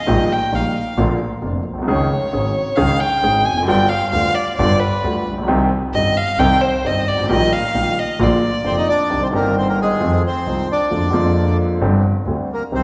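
A rubato tango pulse in 4/4 at 133 BPM sets a melancholic, sultry tone in this excerpt cut from a longer piece. A bowed violin, smooth and up front with vibrato, carries an even solo line in Eb major. Beneath it, a polished, present grand piano plays the accompaniment, and a distant, earthy bowed double bass with light vibrato anchors the low end. At 8.7 seconds a reedy, boxy bandoneon enters up front to take the melody, and from 9.1 seconds the music turns to C minor over chords such as Cm, Fm7 and Bb7/F before settling on a suspended Gsus4. The whole ensemble sits in the wet reverb of a church or concert hall, with a decay of 1.8 seconds.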